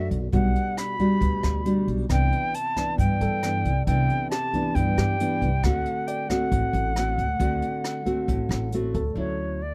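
A close, dry and detailed recording captures this sophisticated, romantic bossa nova excerpt at 136 BPM in straight 4/4, moving through Gmaj7/B, Cmaj9, D7 and Dmaj9. An airy, reedy flute with vibrato and a soft attack carries the melody up front, over a thumb-plucked nylon-string guitar, a woody, thumpy pizzicato upright bass, and a brushed kit with hi-hat, rim click and a boomy kick in a small-room sound. A warm baby grand piano with a short sustain sits in the background, sounding briefly at the start and returning from 3.2 seconds.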